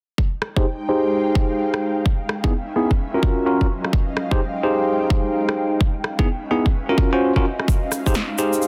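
A swung two-step garage groove at 128 BPM drives this moody, soulful excerpt from a longer piece, its sixteenths pushed with a 63% shuffle in 4/4. A tight, layered electronic kick with a tape-warmed thump sits up front beside a dry, punchy rim click and snare, whose snare carries a touch of soft clipping, both set in a small room ambience. Bell-like tine electric piano stabs ring out bright and clean, roughened by vintage 12-bit sampler grit and tape echo, with a low-pass filter sweep running across them from 0.2 seconds through the end. Beneath them, an ethereal, airy pad of detuned sawtooth and triangle voices with a noise layer swells in slowly from 0.7 seconds, mellow and sustained, thickened by ensemble chorus and reverb and pumping against the sidechain. The harmony cycles through Fm9, Dbm9 and Ebm9 before returning to Fm9, and a grainy, saturated tube shaker slips in at 7.7 seconds. 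The mix is dense and heavily limited, with light reverb.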